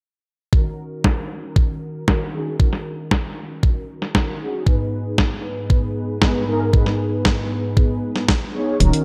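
A mellow synth brass plays stabs in this melodramatic, nostalgic italo disco excerpt, its detuned sawtooth tone brassy and dark as it sustains them between Ab2 and Db5, thickened by chorus, vibrato and tape echo. At 116 BPM in a straight 4/4, it moves from Ebm7 to Abm at 4.7 seconds, staying in Eb minor. A thumpy, sampler-style electronic kick drives from 0.5 seconds, while a clean 12-bit digital drum machine joins at 1.0 seconds with hi-hat and a medium-tuned snare, both parts tape-warm, up front and re-recorded in a large room. A filter sweep runs across the drums and the polysynth, and low-pass filtering shades the drum machine's snare, hats and room. A round, deep analog bass, built from square and sine waves with a filter pluck, sounds only briefly on Eb1 at 8.8 seconds, and light reverb places the mix in a soft space.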